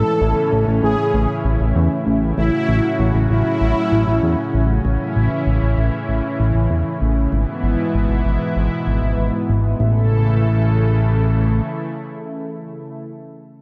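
Opening at once with a smooth, detuned supersaw melody colored by cassette tape and delay, a lush chorused unison pad and a fat, saturated analog bass under a filter sweep, this dreamy, nostalgic synthwave excerpt moves at 97 BPM in A major through a dark production bathed in concert-hall reverb, with the supersaw dropping out at 4.7 seconds, the bass at 11.6 seconds and the pad sustaining until 13.0 seconds.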